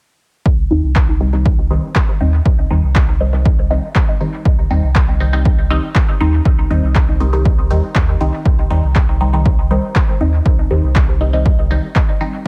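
A punchy, overdriven electronic kick drum sits up front in this cavernous, hazy dub techno fragment, joined by a round, sidechain-pumped sub bass, muted, detuned chord stabs swirling with phaser and dub echo, and gritty layered handclaps that also trail off into echo, all set in a digital ambience.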